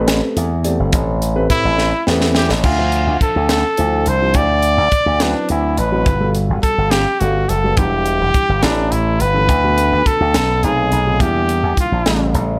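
Light studio reverb frames this slick, funky slice of electric jazz fusion, cut from a longer piece and moving at 70 BPM in a straight 6/8. Up front, a punchy, bright slap bass runs direct and amped through an envelope filter. Beside it, a crisp acoustic drum kit with a high-tuned snare, tight kick, hi-hat and crash cymbal sits in a small, pumping room. A dark, mellow grand piano with a boxy tone supplies the accompaniment, and the piano and drums each play a fill from 1.8 to 2.6 seconds. A close-miked trumpet with vibrato enters at 1.5 seconds to take a warm, jazz-style solo. The harmony opens on Am9 and moves through Dm9, Gmaj9 and Em9 before arriving on a tense Aaug7.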